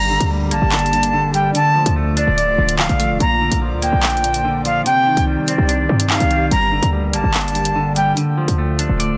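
A jazz flute carries the melody up front in this tense, cold drill cut, its crisp, chiffy attack and expressive vibrato touched with delay as it moves between D5 and Bb5 before dropping out at 8.1 seconds. The hip hop groove sits at 145 BPM in 4/4 with a half-time feel, in G minor, cycling through Gm, Dm, Bb and Cmadd9 across a short passage lifted from a longer piece. Beneath the flute, a clean, twangy electric guitar plays fingered, compressed accompaniment, while a punchy, tight 808-style bass with a fast attack and decaying sine tone anchors the low end. The drill kit enters at 0.2 seconds with handclaps and metallic hi-hats, its electronic sound roughened by vintage 12-bit sampler grit. In the background, an airy, breathy pad with a slow attack and long release holds sustained chords, shimmering through chorus and phaser. Light reverb surrounds a dense, heavily limited modern master that carries lossy compression artefacts.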